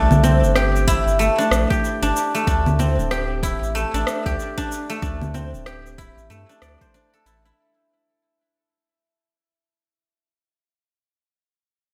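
Earthy and hypnotic, this organic downtempo excerpt moves at 94 BPM in 4/4 with a 16th-note swing, tuned slightly high to A4 = 441 Hz. Up front, an acoustic guzheng played with fingerpicks spins ringing, silvery arpeggios through a tape echo and sounds until 10.1 seconds. Beneath it, a round, dark analog bass with tube saturation and sidechain pumping holds the low end. Electronic congas, cabasa and rim click, joined by a deep electronic kick drum, carry an overdriven, produced grit, as if re-recorded in a small room. A lush hall reverb lends the mix a big arena sound, while the harmony moves from C to D5 at 2.5 seconds. The passage fades out from 0.8 seconds, as though cut from a longer piece.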